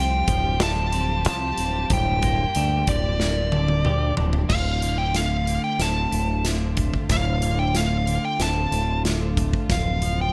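Post-rock with a brooding, cinematic mood, this cut from a longer piece moves in a straight 4/4. A smooth, overdriven lead guitar carries the melody up front, its picked tone trailed by digital delay, while a clean semi-hollow electric guitar picks arpeggios through its own delay. Underneath, a growling fingered bass sits forward in the mix, bright and punchy with overdrive, and a lush bowed string section holds sustained chords with vibrato and a biting edge in the background. A big rock drum kit enters at 0.3 seconds with a punchy kick, medium-tuned snare and bright cymbals ringing in a large room. A drum fill starting at 3.2 seconds leads into a build-up from 4.5 seconds, where the harmony settles onto Dm7 before returning to Fadd9/D near the end.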